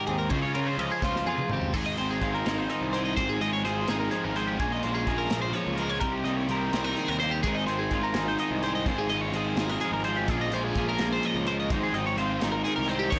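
Math rock and midwest emo in a bright, intricate 6/8 at 84 BPM in Ab major, this short cut sets a bright, twangy twelve-string guitar's phaser-tinged arpeggios up front over a clean guitar's lush-chorused chords, a double-tracked overdriven stack riff, growly fuzz bass and a punchy studio kit whose fill at 1.0 seconds leads into a passage cycling through Ab, Fm7/Ab, Bbm9 and Cm7, all captured dry in a blown-out, overdriven recording with lossy artefacts.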